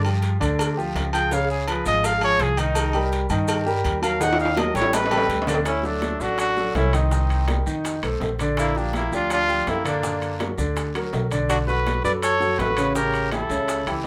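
A moderate club reverb gives this short section of a longer piece a lively, intimate sound, with the trumpet, piano and upright bass up front. It is sunny, sophisticated Afro-Cuban jazz in 4/4, driven by a bed of acoustic percussion: ringing, vintage agogo bells and metal-shell timbales, round, low-tuned cowbell and bongos struck with hard hands, and grainy maracas and a raspy guiro sitting in the background. A polished grand piano with long sustain supplies the accompaniment, while a woody, growly pizzicato upright bass thumps underneath. The trumpet takes the melody from 1.1 seconds, punchy with vibrato, scooped notes and a smooth top, and a drum fill leads into a new section at 5.7 seconds. There a clear tenor saxophone enters with a second line, its light vibrato and scooped notes adding a jazzy voice as the harmony moves through chords like Cm7, F7, Bm9 and A7b9.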